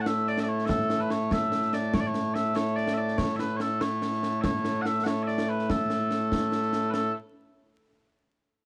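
Stirring and ceremonial, this short excerpt of Scottish traditional pipe music moves at 96 BPM in a straight 6/8 in A major, cut from a longer piece. Mellow small bagpipes carry the melody up front from the start, their sweet, continuous tone ranging from A2 to F#5, while concert snare and bass drum enter at 0.1 seconds, sitting lower in the mix with dark cymbals and a small-room acoustic sound. The close, detailed recording has little reverb and a layer of vinyl crackle.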